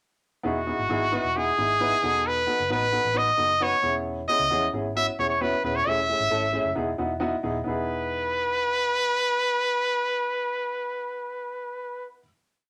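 Soul with an uplifting, danceable feel, this short complete piece sets a brilliant, punchy trumpet with vibrato playing motif-based call phrases up front over a woody upright piano comping in close-voiced eighth-note chords with audible action noise, while a dark, round, foam-muted electric bass with tube saturation moves through a syncopated line full of slides and chromatic approach notes, all settling on a final chord from 7.7 seconds in a moderate studio ambience.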